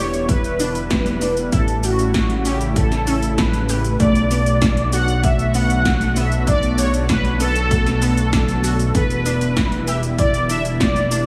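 A small-room sheen of light reverb hangs over this short synthwave excerpt, its nostalgic, nocturnal mood carried at a steady, straight pulse in 4/4. Up front, a mellow synth brass lead sings the melody with a round, brassy tone colored by chorus, phaser, vibrato and a worn cassette-tape quality, its tape echo trailing behind each phrase. Beside it sits a glossy chorused synth bass, sustained and prominent, while in the background a thick, detuned unison pad holds slow-blooming chords that breathe with sidechain pumping. A bright, wave-folded unison pluck spins arpeggios through vintage 12-bit sampler grit and its own tape echo. The drums are tape-warm 80s electronics: a punchy kick from 0.3 seconds, plus a gated snare, metallic hi-hats and cabasa treated with gated reverb, as the chords move from Em7 through A7 to a long Bm7 before returning to Em7.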